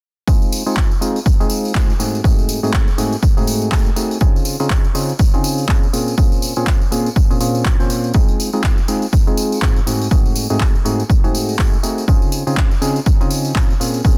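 At 0.3 seconds a punchy, up-front electronic kick, a tambourine and a dark, hollow organ stab all start together in this soulful, energetic piano house excerpt at 122 BPM in 4/4, with a 59% swing on the sixteenths. The organ riff has a fast, percussive attack and a full-bodied, wave-folded tone with a noise layer, colored by chorus, tape echo and sidechain pumping as it moves between Ab2 and C5. Tape-warm electronic handclaps join at 0.8 seconds, and the tambourine sits lower in the mix with a small-room acoustic character. The harmony in F minor, tuned to A4 = 445 Hz, cycles through Fm7, Ab7b9, Dbmaj9 and Bbm9 before returning to Fm7. The sound is dry and dense, with a heavily limited modern master. The handclaps drop out at 13.7 seconds, while the kick, tambourine and organ carry on until the cut at 14.2 seconds.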